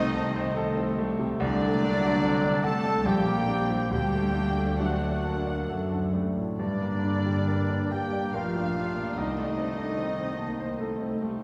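Romantic classical music for piano and orchestra, this passionate, tragic passage in 3/4 moves with a flexible rubato feel and is cut from a longer piece. The grand piano sits up front carrying the melody, its tone clear and intimate with audible action noise and a long sustain, while a rich violin section shares the melody from the background with focused vibrato. A bright silver flute, a clear oboe, a roomy clarinet and a second, expressive violin section trace supporting lines, as a lush viola section with portamento fills out the accompaniment. A distant horn section holds sustained chords, mellow trumpets add tight stabs, and a dark double bass section with soft attack joins a smooth cello section on the bass, with a punchy bassoon stepping in briefly between 4.8 and 6.6 seconds. The harmony turns through diminished and dominant colours, passes through G minor and returns to a diminished chord, and a concert hall reverb places the listener further back in the room.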